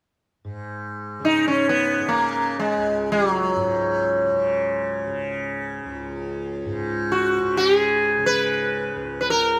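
A softly plucked tanpura opens this Indian classical fragment at 0.4 s, sounding a low, buzzing drone that sits quietly beneath everything that follows. At 1.2 s the sitar enters with the melody in raga Bhimpalasi, its plectrum-plucked tone round and placed up front, well above the drone in level. Sympathetic strings lend the sitar a shimmering halo, while the tanpura carries a gentle buzz and warmth of its own. The mood is introspective and solemn, with the melodic line moving through the middle register over the steady drone. A moderate reverb, like that of a scoring stage, gives both instruments a sense of space, and the two play on together until the cut at 9.6 s.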